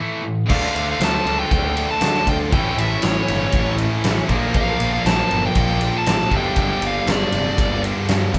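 Hard rock with a menacing, heavy mood at 119 BPM in D harmonic minor, where biting overdriven and cranked stack guitars open the riff at 0.0 s on an A5 before a huge arena drum kit with a fat snare and punchy kick, a growly fuzz picked bass, a tight double-tracked distorted guitar and a nasal lead guitar with a parked wah carrying the melody all enter at 0.5 s, moving through Dm, A, Bb and Gm in a band playing live in one room with light reverb, cut from a longer piece.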